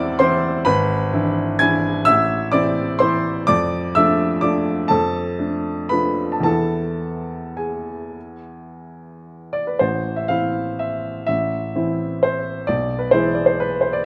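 A clear, woody upright piano plays alone throughout this short classical waltz fragment, its up-front, natural tone carrying a wistful, elegant mood in a flowing triple metre with a rubato feel. The harmony moves through minor chords and dominant colours across a range from deep bass to bright treble, shifting into a new section at 9.8 seconds. A moderate recital-hall reverb gives the piano a graceful sense of space, and the passage is cut from a longer piece.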